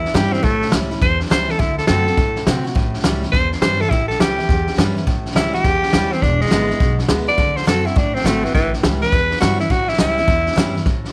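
A small room frames this upbeat, retro rockabilly clip at 207 BPM in 4/4 with a swung feel in A mixolydian, as a raspy, gritty tenor saxophone with slapback echo sits up front and takes a solo from the start until 10.8 seconds, playing scooped notes with light vibrato. Beneath it, a bright, full-bodied picked steel-string acoustic guitar with audible finger squeak and a woody, thumpy pizzicato upright bass carry the accompaniment over chords moving between A7, D7 and E7. A vintage drum kit with a fat snare, punchy kick, hi-hat and a rolled-off top drives the groove from up front, all cut from a longer piece.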